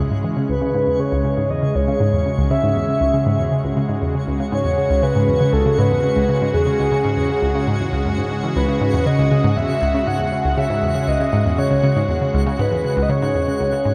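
A dark, warm production sits in a moderate plate reverb with a long 3.2-second tail, giving this hypnotic, expansive ambient excerpt a deep sense of space. At 119 BPM in a straight 4/4, it rests on a single C# minor chord throughout its 13.9 seconds. A thick, airy unison pad holds sustained chords up front, while a round, nasal analog pluck plays a low riff, coloured by chorus, phaser and analog delay. A filter sweep runs across this synth arpeggio sound for the whole passage. From 0.5 seconds a soft, breathy, flute-like lead carries the melody with vibrato, lush chorus and analog delay. Quietly in the background, a twinkling granular texture adds an octave-up shimmer with its own reverb.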